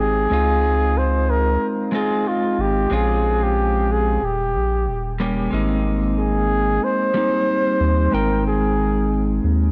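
Sunset chillout in Ab major at 92 BPM, this sunny, blissful fragment of a longer piece sets a mellow flugelhorn melody with light vibrato and tape echo over a clean, compressed, picked electric guitar and a round, dark analog bass that sits up front. Lush hall reverb and worn cassette tape with warbly pitch drift soften the sound as the chords drift from Dbmaj9 through Bbm9 and Eb7. At 5.5 seconds the harmony settles onto Abmaj7, then Abmaj9; the flugelhorn stops at 9.4 seconds, while the guitar and bass play on to the end.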